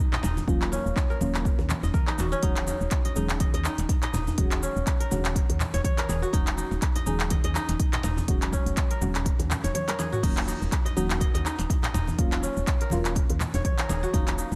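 Ringing, fingerpicked kora arpeggios open this earthy, driving afro house excerpt at 123 BPM in Eb minor alongside a deep, detuned chord stab with chorus, phaser and delay, both pumping, and a crisp-hatted, tape-warm afro-pop kit of cabasa, handclaps, toms and crash, soon joined by distant background congas, a very quiet metal-rattled djembe, a woody, round FM bass and an up-front electronic kick, all swinging over a dry Ebm9 to Dbsus4/Eb progression that returns to Ebm9 at 10.2 seconds after a drum fill at 9.7 seconds.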